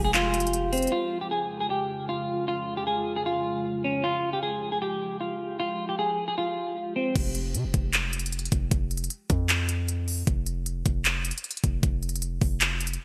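Menacing and eerie, this half-time trap hip hop excerpt in F minor at 154 BPM opens with a brief hit of punchy, heavy 808-style bass and an overdriven trap kit that stops at 0.9 s, leaving a clean, fingered semi-hollow electric guitar melody drenched in lush chorus and digital delay over the dark, glassy sustained chords of an ethereal FM pad until 7.1 s, before the up-front 808 and the kit's knocking kick, crisp hi-hats, handclaps and crash cymbal, gritty with gated reverb, take over at 7.2 s, all set in a bright 1980s-style digital production with a lush hall reverb.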